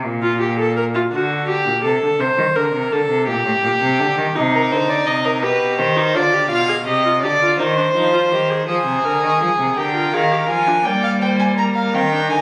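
Solemn and driving, this baroque-style string quartet fugue moves at 56 BPM in a straight 6/8, with a rich, gut-string cello on the bass and a smooth-topped viola accompaniment opening the piece almost together, both bowed in period style by single players. A warm, reedy violin adds a second line at 4.5 seconds, and a dark, nasal violin carries the melody from 8.7 seconds as the music passes into its second section over harmonies that move through minor and diminished colours. The sound has the compressed character of a phone recording made in a recital hall, with a moderate hall reverb and a club-like ambience, and the playing is cut from a longer piece.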